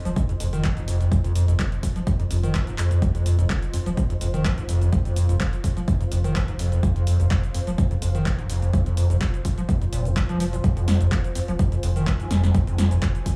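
A dry, close-sounding acid house excerpt at 126 BPM in F minor, driving and gritty, built on a single Fm7 chord with a light 16th-note swing. A squelchy, resonant square-wave acid bass riff sits up front with chorus and delay, above a round, deep sine sub bass, an overdriven electronic kick and a punchy analog drum machine of handclaps, hi-hat, shaker and snare that plays a fill at 2.8 seconds. Behind them a blurred, granular cloud pad fades in throughout with its own reverb, pumping to the sidechain along with both basses.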